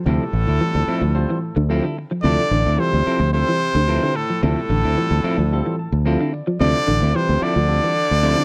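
A dry, close 1970s-style studio sound in a small room carries this intense, defiant afrobeat passage cut from a longer piece, with a bright, smooth-topped trumpet leading the melody up front over a round, amped fingered electric bass, a raspy, gritty baritone saxophone playing a second line in the background, one clean picked electric guitar spinning chorus-tinged arpeggios while another adds stabs, and a barky tine electric piano, lightly overdriven through a combo amp with phaser, accompanying from behind and adding a fill from 5.5 to 6.6 seconds.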